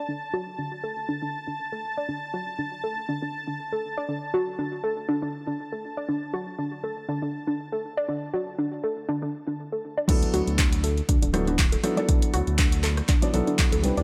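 This deep house excerpt opens with a warbly, dusty pluck playing arpeggios up front, its lo-fi tape character, chorus and delay shaped by a filter sweep, while a silky, detuned analog string pad holds a high, bright texture beneath it. The mood is relaxed and soulful, moving at 120 BPM in 4/4 with a gentle swing on the sixteenths, in D major. At 10.1 seconds the drop arrives: the pad stops and a smooth, gliding synth bass enters, dark and sustained with tube saturation and sidechain pumping. Alongside it come soft stabs from a felt-muted upright piano, mellow and intimate with audible action noise and a touch of delay. A deep, layered electronic kick anchors the groove until 13.7 seconds, joined by a punchy, overdriven analog drum machine with crash cymbal, handclaps, hi-hat and rim click, its cymbals and hats dulled by low-pass filtering. The mix sits in light reverb.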